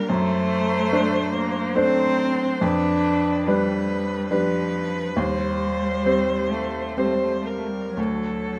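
A brilliant baby grand piano sits up front, laying down the accompaniment beneath a rich violin melody and a second line on cello, both strings sounding distant, expressive and bowed with vibrato and portamento. This yearning, solemn slow romantic movement for piano trio moves in 3/4 at 57-73 BPM with a free rubato feel, tuned to A4 = 441 Hz, passing through D7/F#, G7/F and Cm/Eb before arriving on D at 8.0 seconds. Close, detailed microphones and light reverb frame this fragment cut from a longer piece.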